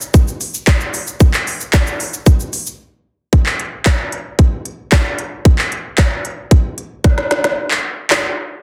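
Dense, heavily limited and lightly reverberant, this energetic, confident pop clip in a straight 4/4 centers on an up-front, overdriven electronic drum kit with an organic, large-room character, its tight kick, woody snare and crisp hi-hats joined by handclaps and shaker, pausing for a short break at 2.8 seconds and rolling through a fill at 7.0 seconds before the final section.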